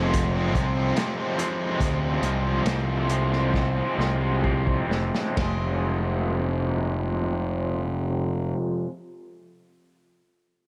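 A bright, double-tracked cranked-stack guitar riff with overdrive, tremolo and a low-pass filter opens this hypnotic, trippy psychedelic rock excerpt alongside a fuzzy, picked electric bass. The music slows down through its first 5.4 seconds, while a muffled, lo-fi vintage drum kit with dark cymbals and a tight kick plays a fill from 3.5 to 5.4 seconds and drops out at 5.6 seconds, leaving the up-front guitar and bass to carry on in light studio reverb.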